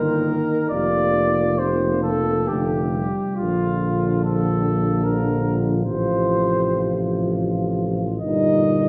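A rubato 3/4 pulse moving between roughly 65 and 79 BPM gives this short classical brass band passage its hymn-like, tender character, cut from a longer piece. A mellow cornet carries the melody up front, its light vibrato softened by distance and room. A dark French horn section supplies a second line beneath it, while a dark, punchy euphonium with a smooth top and a clear trombone set further back fill in the accompaniment. A warm tuba with vibrato anchors the bass, sitting forward in the blend. The harmony moves from Eb/G through a suspended F resolving to F, settles on Bb, and returns via F/A to Eb/G, all wrapped in a wet recital-hall reverb that lends the whole ensemble a gentle, church-like glow.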